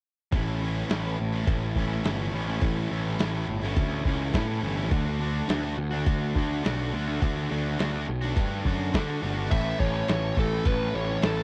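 Confident and driving, this classic rock excerpt moves at 104 BPM in a straight 4/4 in A major, with a bright overdriven stack guitar and a distorted, compressed second guitar sitting further back, both playing the riff over a growly, fuzz-soaked bass and a muffled, thumpy, tape-toned sampler-style drum kit with crash, hi-hat and medium-tuned snare up front. The chords move from A to D at 4.9 seconds and back to A at 9.5 seconds, where a dark fuzz lead guitar with slapback echo enters up front with a short melody. The sound is dry and close, like a 1970s-style studio recording with little reverb.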